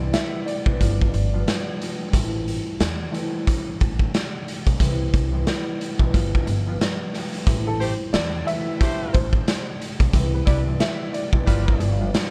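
Dry and dark, this boom-bap hip-hop piece has a moody, swung feel built on a gritty, saturated garage drum kit of punchy kick, snare and hi-hat that sits up front in a pumping stone room. A woody, thumpy pizzicato upright bass and a mellow, ringing fingerpicked concert harp with a cassette-tape tint carry the accompaniment, while a worn, slightly detuned vintage upright piano plays the melody with delay at the start and again from 7.7 seconds. From 7.8 seconds, a jazz-style horn section adds present, vibrato-rich stabs with its own touch of delay.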